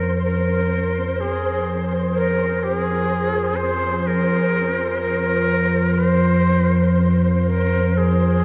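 A breathy bamboo shakuhachi carries the melody up front, its end-blown tone marked by chiff, tongued notes and vibrato, with rolled-off highs and an expressive line moving between Ab4 and C5 through shimmer reverb and delay. Beneath it, a deep, ominous drone rumbles from F2 to F3, built from detuned triangle and sawtooth tones that are wave-folded, slow to rise and long to fade, sitting dark and forward with its own reverb. A flickering, grainy granular texture hovers on C5, mellow and detuned, bathed in its own reverb plus shimmer. This dark ambient drone piece sits in F minor at 62 BPM in a straight 4/4, resting on a single F minor chord, with all three parts sounding together from 0.0 to 8.4 seconds. The mood is cavernous and unsettling, set in a vast, echoing space with a huge, wet reverb tail of 8.9 seconds and a cassette-tape character, in a short fragment cut from a longer piece.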